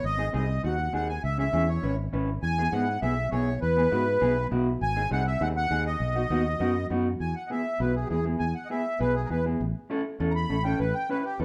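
A reedy, sweet accordion with a light tremolo tuning carries the melody up front in this festive, joyful cumbia fragment, and from 7.2 seconds it takes a solo. Beneath it, a fingered electric bass sits close and warm, its amped tone direct and forward. A mellow, clean electric guitar joins at 0.2 seconds with dark, fingered accompaniment in a middle register. The harmony moves through G#7, C#m7 and E before settling on E and then A in the closing section. A moderate large-studio reverb gives the joyful dance groove a roomy sense of space.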